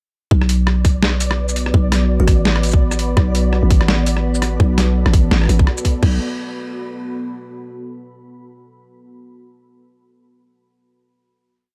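A dark, heavy half-time drum and bass piece opens at 0.3 s with a tight, up-front electronic kick and a growling, buzzy 808-style bass carrying long tube-saturated notes, soon joined by a sparse, overdriven boom bap sampler kit of snare, rim, closed hat, shaker and crash. A deep, moody ambient pad with chorus, 12-bit sampler grit and sidechain pumping holds slowly shifting chords, while a grainy, flickering texture sustains a high note in the background and a very quiet, woody kalimba plucks a short phrase around 2.2 s. The drop gives way at 6.0 s to a final chord from the pad, in a dry, gritty hardware recording.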